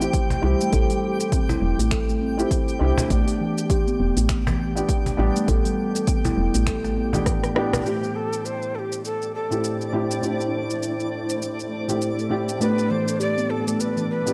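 Organic downtempo in A minor at 101 BPM with a 16th-note swing, earthy and mystical, opens on a felt-muted upright piano with sidechain pumping and analog delay, a round, dark FM bass, a punchy electronic kick, a cajon, finger snaps, rim clicks, shaker and overdriven hi-hats, a ringing steel tongue drum struck with soft mallets, and a twinkling granular texture, until a drum fill and band accent near 7.7 seconds give way to a breathy, up-front cedar flute with vibrato and chiff at 7.9 seconds, where a filter sweep unfolds on the ambient pad and a blurred, cloudy granular pad enters at 10.3 seconds, all in a gritty, dry small-room sound.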